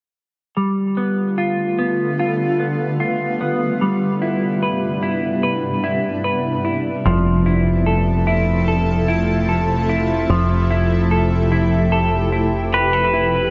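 Floating and blissful, this dream pop passage moves at an unhurried straight pulse, cut from a longer piece. A dark, clean semi-hollow electric guitar opens at 0.6 seconds with fingered arpeggios, its hollow-body tone touched by subtle chorus and digital delay. Moments later a shimmering, ethereal pad settles in with sustained, detuned chords, its octave-up shimmer and granular texture carried on chorus and built-in reverb through a harmony that drifts from G9 to Cmaj9/G and on to Fmaj7. At 7.1 seconds a punchy, funky analog bass arrives with a fast-attack filter pluck that decays on a low F. In the final moments a twangy pedal steel guitar, played with fingerpicks and slide, lifts a compressed, digitally delayed melody note above the rest. A wet plate reverb bathes the mix, and the top end stays soft and rounded.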